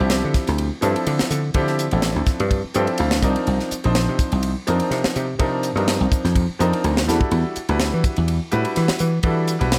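A lightly reverberant, up-front mix carries this driving, funky electric jazz fusion at 125 BPM with a gentle 16th-note swing, where a punchy, foam-muted thumbed slap bass anchors a brilliant grand piano, full of audible action noise and long sustain, that moves through Dm11, Cm11 and Em11 chords and adds a fill at 2.5 seconds, while a tight acoustic funk kit with a high-tuned snare works hi-hat, kick, ride and snare and fills at 7.1 seconds.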